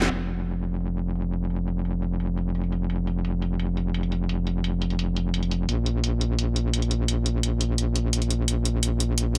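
A straight 4/4 groove drives this dark, aggressive slice of technical drum and bass, opening on a full-band accent at 0.0 seconds before a filter sweep runs across the drum kit until 9.4 seconds. The electronic, layered kit sits up front with a cracking snare and bright hats, low-pass filtered and re-recorded in a small room. A metallic FM wobble bass, saturated and compressed with chorus, sustains with a fast attack. The mix is dry, cut from a longer piece.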